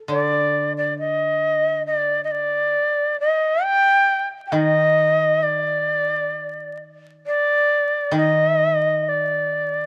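Austere and calm, this fragment of Japanese traditional chamber music moves at a free, rubato 67 BPM in 4/4. A reedy, airy end-blown bamboo shakuhachi carries the melody up front, its tongued notes shaded with vibrato and rolled-off highs. Beneath it a dry, woody koto played with fingerpicks gives low accompaniment, both sounding from 0.1 to 9.9 seconds under close, detailed microphones, light reverb and vinyl crackle.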